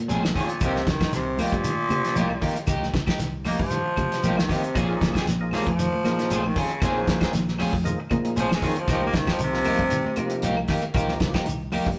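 A rough rehearsal-room recording in a moderate stone room captures a hypnotic, funky afrobeat excerpt at 116 BPM with a lightly swung 16th feel, where a raspy, gritty baritone saxophone with tape echo solos up front over a dark, round fingered electric bass, a cloth-damped thuddy drum kit with a fat snare, a clean electric guitar picking arpeggios in the background, a twangy guitar at the edge of break-up playing stabs through harmonic tremolo, bright high-tuned congas, grainy shekere and woody claves, while a percussive tonewheel organ with overdrive, chorus vibrato and a slow rotary speaker joins at 4.7 seconds as the chords move between Bbm9 and Cm7.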